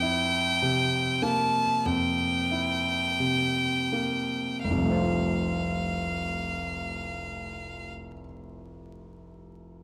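A bright, close violin with vibrato and an airy, intense bow sings a tender melody over a clear, natural grand piano, both up front in this romantic classical duo cut from a longer piece. The rubato playing slows through the opening 4.7 seconds before the harmony settles. The violin falls silent at 7.9 seconds, leaving the piano to finish alone until 9.8 seconds, all wrapped in the wet reverb of a recital hall and a layer of vinyl crackle.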